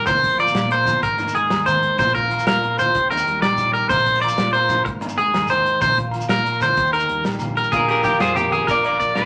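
Highlife guitar band music in a straight 12/8, warm and sunny, cut from a longer piece. Up front, a twangy electric guitar at the edge of break-up spins arpeggios across the whole passage over a full-bodied fingerpicked jumbo acoustic guitar, while a round, dark hollow-body bass sits in the background. A dark, smooth soul drum kit with a punchy kick and medium-tuned snare drives the groove from a small room, joined by grainy shekere, low-tuned, thick-skinned congas and faint, ringing agogo bells that sound distant in a large space. The chords cycle through Bbadd9, Abadd9, Bbsus2 and Ebmaj7 before landing on Bb at 7.7 seconds, where a clean, picked electric guitar steps forward with a melody bathed in spring reverb. A club reverb gives the band a wet, lively sheen.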